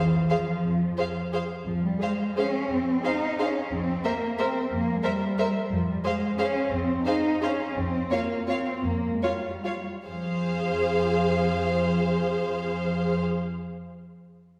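Violins, violas and cellos open together on an F minor chord, with the double basses joining at 0.6 seconds beneath a lush, vibrato-rich violin melody and a second violin line of rich tone. This bittersweet, sweeping classical fragment moves in a rubato 3/4 between 136 and 193 BPM and slows from 7.2 to 10.1 seconds. Smooth-topped violas fill the middle while up-front cellos with soft attack and portamento carry the bass, all set back in a wet concert hall reverb.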